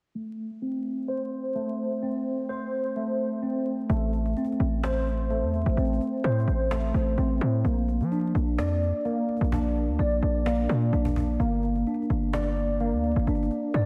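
Melancholic and menacing, this half-time trap excerpt at 128 BPM in A phrygian opens with a mellow tine electric piano playing arpeggios alone, its clean, up-front tone shaped by ensemble chorus, delay and a low-pass filter that sweeps through the first 3.9 seconds. At 3.9 seconds a punchy, heavy 808-style bass with a fast attack and decaying sine body arrives alongside a snappy, close cajon struck with hard hands, as the chords move from Am to Bb and then Gm. The dreamy mix is soaked in a lush hall reverb and dusted with vinyl crackle.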